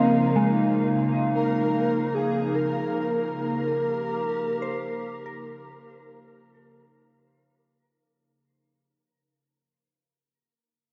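Drenched in a huge, dark reverb, this short ambient fragment cut from a longer piece feels peaceful and weightless, drifting at 72 BPM in 4/4 over a single Dbadd9 chord in Db lydian. Up front, a warbly tape-like pad holds sustained chords with a slow attack and long release, its detuned, lo-fi tone carrying a nostalgic, vintage haze through chorus and its own reverb. Alongside it, a breathy, flute-like synth lead sings a soft melody between Ab4 and Bb4, colored by vibrato, tremolo, chorus and a diffuse ambient delay until it stops at 7.2 seconds. Further back, a pure FM bell traces gentle, decaying arpeggios through chorus, phaser and delay, lingering longest, to 9.1 seconds, while a nasal, string-like drone in the low register adds a tense, evolving edge with vibrato. The whole passage fades out from the start, dissolving into the reverb tail.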